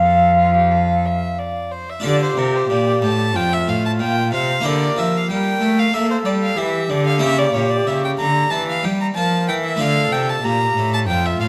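A baroque-style sonata movement in classical style opens with all four parts together: a violin with an airy, nasal gut-string bow carries the melody up front, a distant, wooden baroque flute with vibrato sings the second line, a rich, reedy cello holds the bass, and a close, dry, brilliant harpsichord plucks the accompaniment. The feel is flowing and radiant under a free rubato, moving from F to D minor at 2.0 seconds and through a diminished chord at 7.2 seconds before settling back on D minor at 9.8 seconds. A moderate recital-hall reverb surrounds this brief excerpt cut from a longer piece.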